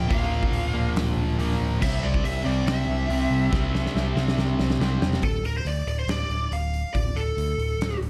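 A straight 4/4 pulse at 140 BPM drives this aggressive, heavy hard rock excerpt in D minor, cut from a longer piece. A big acoustic rock kit, dark and smooth with a punchy kick, medium-tuned snare, hi-hat and crash, comes in at 0.1 seconds and plays a fill from 3.5 to 5.2 seconds. Up front, a growly, bright overdriven picked bass holds the low end throughout, while three guitars stack the riff over Bb/D and C chords: a double-tracked high-gain distorted guitar, plus an overdriven electric and an overdriven semi-hollow guitar sitting in the background. Above them, a lead guitar through a small cranked amp carries the melody with overdrive and slapback echo. At 5.2 seconds the riff guitars stop and the music moves to a D5 power chord, leaving lead, bass and drums in a small room with light reverb.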